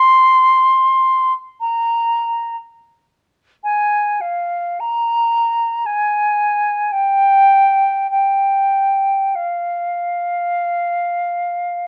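Yearning and mournful, this short excerpt from a longer classical piece features an unaccompanied silver concert flute in F minor, playing expressively in free time between F5 and C6. The flute's tone is pure and straight, with a crisp attack, and sits up front. The sound carries a moderate stone-room reverb and the worn, warbling character of old cassette tape, whose pitch drift gives the line a faded, wavering quality.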